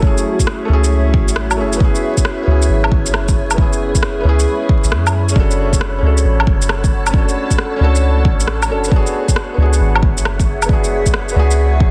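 Future garage at 135 BPM with a swung 16th-note feel, this wistful, ghostly passage cut from a longer piece moves through F#m7, C#m7/F#, Bm7/F# and E9/F# over a deep, round 808-style bass and an up-front electronic kick, while tape-warm shaker, rim click and woodblock add layered percussion, the snare softly clipped. A felt-muted upright piano plays intimate, mellow accompaniment through tape echo, and a cloudy, detuned granular pad holds sustained chords with 12-bit sampler grit, both pumping with the bass against the sidechain. An airy, wind-like tuned noise texture breathes in the background on C#5, all under a dense, heavily limited master dusted with vinyl crackle.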